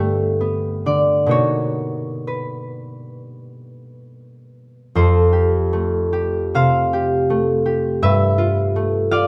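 Classical solo harp music, peaceful and graceful, drifts in a rubato 4/4 between 63 and 84 BPM in F lydian, as a fingerpicked concert harp sits up front with a ringing tone across a range from F2 to G5, wrapped in a wet recital hall reverb, moving through Gadd9 and Bmaj7 before turning to a new section at 5.0 seconds on Fadd9 and arriving at G13 by 8.0 seconds in this short cut from a longer piece.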